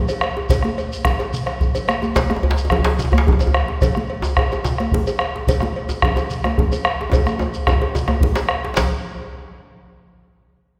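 West African traditional drum ensemble in a powerful, driving 12/8: a round, up-front bombo plays alongside metallic cowbell, tight, cracking djembe, ringing high-tuned congas and grainy shekere, a second medium-tuned djembe joins at 2.2 seconds, and drum fills at 1.5 and 7.1 seconds punctuate the groove in a reverberant concert-hall space.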